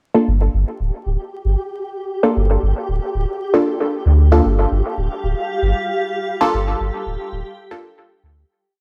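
Muted, detuned sawtooth chord stabs open this hazy, hypnotic dub techno piece at 115 BPM in G minor, sparse and echoing through a phaser as one Gm7 shape moves in parallel. A round sine sub bass with tube saturation settles into a syncopated riff beneath them, while a flickering, grainy granular texture holds a single high note in its own reverb. A cloudy, evolving granular pad enters at 5.1 seconds with blurred, full-bodied sustained chords as the piece fades out from 5.7 seconds, all within a dry, gritty hardware sound touched by transformer saturation and vinyl crackle.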